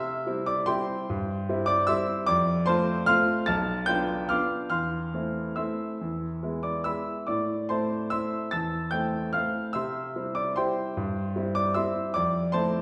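Elegant and bittersweet, this short classical waltz fragment, cut from a longer piece, moves in a flowing three-beat metre with a supple, rubato feel. A lone grand piano carries everything, its tone natural and rounded as it spans from deep bass notes up to bright, high treble. The piano sits up front, yet the listener seems placed further back in a recital hall whose lush reverb lingers around each phrase. The harmony drifts through shadowed, searching chords before settling on A minor at 7.3 seconds, then lifts toward a more open colour by the close at 12.8 seconds. The result feels intimate and wistful, like a brief glimpse into a larger salon piece.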